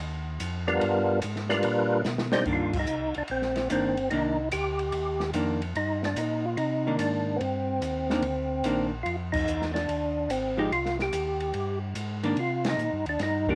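A percussive tonewheel organ carries the melody up front, its fat, clean tone sharpened by third-harmonic percussion and key click, swirling through a slow rotary speaker with chorus vibrato and a cassette-tape haze. This is a bluesy, smoky soul jazz organ trio excerpt cut from a longer piece, swinging at 145 BPM in 4/4 in C minor. Underneath, a second, mellow tonewheel organ holds down the bass line with a round, dark voice, also turning on a slow rotary speaker. An acoustic jazz kit in a small room brings dark cymbals, a medium-tuned snare and a boomy kick, rolling a fill from 2.0 to 2.5 seconds before a vintage hollow-body electric guitar enters at 2.5 seconds, adding clean, picked, up-front accompaniment on the same cassette grain. The band hits accents together over harmony that moves from Cm9 through G7#9 to Fm9 and back, all in a moderate room ambience with the character of a home cassette recording.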